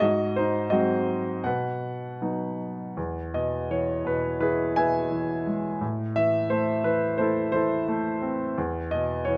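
Set in a moderate recital-hall reverb, a clear, present grand piano sits up front with long sustain, playing alone from 0.0 to 9.4 seconds in this short passage cut from a longer classical piece. The mood is hopeful and relaxed, a lyrical solo in E major at 77-88 BPM in 4/4, shaped with a flexible rubato feel and spanning E2 to G#5. Harmony drifts from G#7 and B into E at 3.0 seconds, touches A minor, and settles on an open E chord near the close.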